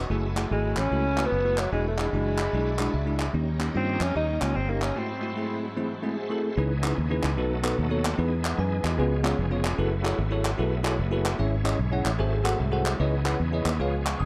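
This dark, warm production sits in a small room with light reverb, giving a fervent, soulful slice of uptempo gospel a close, swung 4/4 feel. A round, punchy fingered electric bass sits up front, while a bell-like tine electric piano carries the accompaniment and drops in a fill at 2.5 seconds. A shouting tonewheel organ holds sustained chords through a slow rotary speaker with chorus vibrato and audible key click, and hollow group handclaps keep time from a live-sounding room. A lush bowed string section hums in the background until 6.6 seconds, as an alto saxophone with a vintage subtone and scooped notes takes the melody, coloured by slapback echo. During a short break, a mellow, compressed electric guitar enters at 5.8 seconds with a fingered second line bathed in spring reverb, over rich, extended chords that resolve back to a minor ninth.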